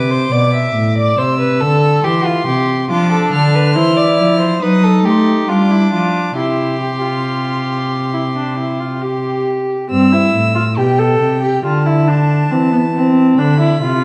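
Classical baroque-style fugue for string quartet, elegant and stately, in which one distant, nasal violin carries the high melody over a second, reedy violin line that stops at 9.4 s, while a smooth-topped gut-string cello holds the bass up front and a rich viola with light vibrato joins at 2.9 s, all four bowed in period style and set in a dark, wet recital-hall acoustic.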